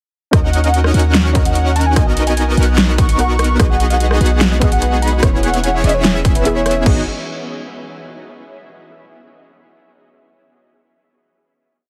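A heavily compressed, radio-like future bass drop in G# minor at 147 BPM with a half-time feel, lush and emotional, where a punchy up-front kick and a dubstep kit with a huge snare and metallic hat rolls sit alongside a deep, boomy 808-style bass locked to the chord rhythm, a fat detuned sawtooth polysynth riff that throbs in tempo, a soft round pluck in the background, an airy dreamy lead with vibrato playing short answering phrases, a very quiet breathy pad from 1.1 seconds, and a faint tine-like, warbling thumb-piano-style arpeggio from 3.6 seconds, moving through D#m7, Bmaj7, G#m7/B and E6 before settling on a final G#m7 at 6.9 seconds.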